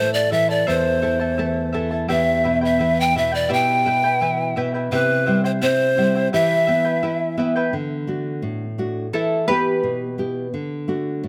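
A breathy bamboo pan flute carries the melody up front in this short cut from a longer Andean folk piece, its bright tone marked by a soft, chiffy attack, gentle vibrato and lifted highs. The mood is festive yet wistful, moving at 85 BPM in a straight 2/4 in E minor. Beneath it, a fingerpicked charango adds a shimmering layer from its doubled strings, some sounding in octaves, while a full-bodied classical nylon-string guitar, also fingerpicked and up front, anchors the low end. The flute drops out at 7.3 seconds, and from 7.7 seconds the charango takes a brief solo over chords moving between D and Em before it stops at 10.1 seconds, leaving the guitar to carry on alone. Close, detailed microphones and light reverb keep the small ensemble intimate and clear.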